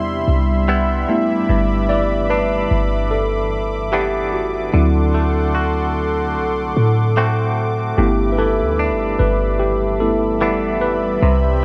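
A rough home-demo mix with light reverb frames this dreamy, smooth R&B fragment, cut from a longer piece and running 11.6 seconds at a relaxed 74 BPM in 4/4, with a swung sixteenth-note feel in G major, tuned slightly sharp to A4 = 441 Hz. The tine electric piano takes the solo throughout, its worn, slightly out-of-tune voice sounding clean and direct as it carries the accompaniment. Underneath, an 808-style bass sits up front with a deep, boomy, sine-like tone whose fast attack decays into a mellow glow. A warm analog pad holds sustained chords with a slow attack, blending sawtooth and triangle colours that are detuned, ring-modulated and thickened with chorus. A clean electric guitar, recorded direct, adds bright, twangy, compressed arpeggios coloured by tremolo and tape echo. The harmony moves from Cmaj7 to G6, then to D7 at 4.7 seconds, and returns to G6 at 8.0 seconds.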